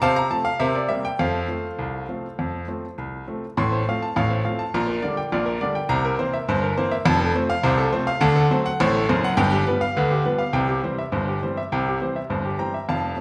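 A clear baby grand piano opens alone on an F chord over C, setting a lively, cheerful ragtime mood at 103 BPM in a straight 2/4 in F major. The solo piano spans from deep F1 up to C6 and plays through to 13.2 seconds, with the audible clicks of its action adding an intimate, natural closeness. It sits up front, while a wet recital-hall reverb with a 1.4-second decay gives the sound the bloom of a church or concert hall. After a short opening phrase, a longer passage starting at 3.6 seconds moves through F over A, G minor over B-flat, C7, F, D7 and G7 before landing on C. The clip is cut from a longer piece and stops on that C chord.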